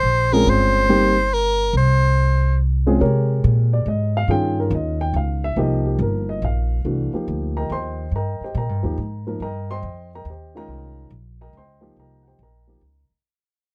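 Cool and intense, this modal jazz excerpt in C phrygian moves at 141 BPM in a swung 3/4, with a bright, close-miked soprano saxophone voicing a brief vibrato-laden solo line that ends at 2.6 seconds. A woody pizzicato upright bass on steel strings runs throughout, while a dark, mellow baby grand piano with short sustain and audible action noise joins at 0.3 seconds and carries on as the piece fades out from 3.0 seconds. The dry, intimate sound evokes a close 1970s studio, with every part placed up front.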